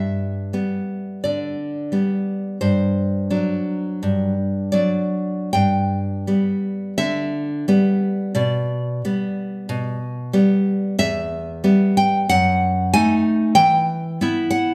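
A wet, large studio reverb surrounds an up-front nylon-string guitar, captured live in a large room. This intimate, wistful romantic passage for solo classical guitar is cut from a longer piece and drifts with rubato between 71 and 97 BPM in 4/4. The fingerpicked guitar has a bright, full-bodied tone with audible finger squeaks, and it moves from G major into E minor at 11.0 s.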